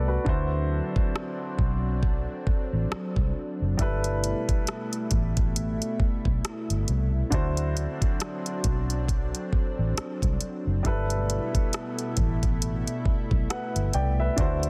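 A 68 BPM groove in 4/4 with a 16th-note swing drives this dreamy, romantic contemporary R&B excerpt in G major: a produced electronic kit enters at 0.3 s with a knocking kick and rim clicks while its metallic hi-hats stay muted until 3.8 s, a dark, round, foam-muted electric bass sits up front, a polished baby grand piano supplies accompaniment, and a thick, warbling, detuned pad with chorus sustains chords that alternate between D7 and G69, heard through a dry, dense, heavily limited modern master.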